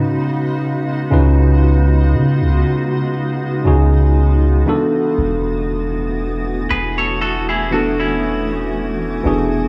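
The long sustained 808-style bass stands out most, deep, mellow and up front, its sine-toned notes hitting with a fast attack and then decaying beneath this moody, sensual R&B excerpt in C# minor. At a slow 59 BPM in 4/4 with a light sixteenth-note swing, a tine electric piano carries the accompaniment, clean and up front with the coloring of built-in speakers. Behind them a granular cloud pad holds sustained chords, blurred and evolving with a slow attack, long release and its own reverb. The harmony rests on C#9sus4 before moving to E9sus4 at 4.7 seconds. At 6.7 seconds a clean electric guitar enters with bright, twangy picked arpeggios, compressed and fed through a digital delay, until 9.5 seconds. The whole sits in a small room with light reverb.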